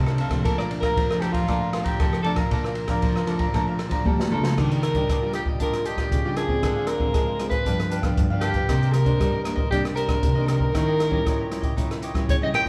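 A warm, vibrato-laden soprano saxophone takes the jazz-style solo up front from 0.4 seconds in this playful, sunny samba-choro excerpt, sounding distant and roomy over a crisp picked cavaquinho, a fingerpicked classical nylon-string guitar in the background, a second dark, fresh-stringed nylon-string guitar on the bass line, and a smooth, dark acoustic jazz kit with a boomy kick and rolled-off top whose fill at 4.1 seconds leads into a new section in Eb major, all played live together in one large studio room with moderate reverb.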